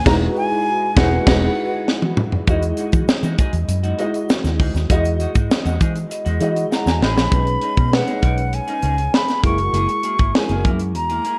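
A straight 4/4 groove at 99 BPM drives this urban, breezy 1980s jazz-funk pop excerpt, where a tight, up-front funk drum kit with gated reverb and a high-tuned snare, a round, foam-muted fingered electric bass, a dark, boxy grand piano under ensemble chorus and a clean semi-hollow guitar riff bathed in lush chorus back a breathy flute melody with vibrato that opens the passage and returns at 6.7 seconds, while a grainy egg shaker sits in the background from 2.5 to 7.3 seconds, band accents punch the opening, drum fills and a piano fill mark the turns, and Emaj9, B69 and F#9 chords unfold in light small-room reverb.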